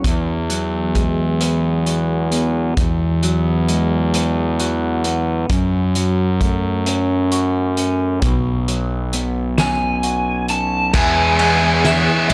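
A bright, up-front overdriven guitar riff enters at 10.9 s with a drum fill and lush bowed strings in the background, capping a euphoric, soaring post-rock build at 44 BPM in 6/8 and E major, where compressed clean guitar arpeggios with phaser and analog delay, round fuzz bass and a loose indie kit with a fat snare, punchy kick and dark cymbals carry the opening in a small room until an overdriven slide guitar melody arrives at 9.6 s, all cut from a longer piece.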